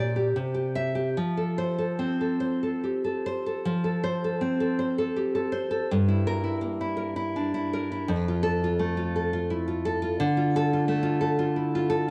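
A solo nylon-string guitar opens at once, fingerpicked and bright, setting a wistful, passionate romantic mood in F major. The piece moves in a rubato 3/4 at roughly 70-89 BPM, with the classical guitar spanning from F2 up to E5 and sitting up front in the mix. The harmony drifts from C to F, then darkens on a Gm6 around 5.9 s before returning to F and settling on D minor near 10.2 s, as a phrase heard at the start is taken up again from 3.7 s. A moderate, lush hall reverb surrounds the acoustic tone, while the guitar carries the soft grain of cassette tape, giving the home recording an intimate, slightly aged character. Tuned a touch below standard pitch, this 12-second fragment is cut from a longer piece.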